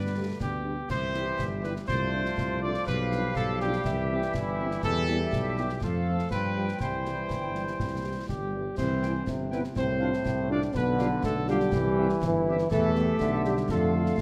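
A mellow, soft-attack trumpet section carries the melody over a warm blend of woodwinds with light vibrato, a clear, tight trombone section holding sustained chords, a smooth-topped tuba bass and a euphonium second line that drops out at 0.9 seconds and returns at 8.3 seconds. Within the first half second they are joined by a very quiet, close-miked French horn section and dark-cymbaled concert snare, bass drum and clash cymbals, in a festive, rousing military-style wind band march in C major at 122 BPM in straight 2/4, cut from a longer piece and set in a moderate scoring-stage reverb.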